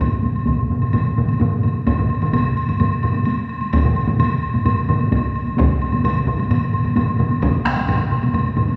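A straight, even pulse in four drives this short cut from a longer Japanese traditional taiko piece, and its mood is driving and powerful. A solo taiko played with hard sticks sits close and dry at the front, while three taiko ensemble parts fill out the sound: one struck with heavy sticks in a small room, another with heavy sticks in a live room, and a third with hard sticks that comes across compressed and saturated. A woody woodblock sounds distant, set back in a large room and a touch quieter than the drums. The drumming carries through the whole passage, with the music moving into a new section at 1.9 seconds. The overall mix is placed further back in a wet concert hall with a long, resonant tail, giving the ensemble a grand, spacious weight.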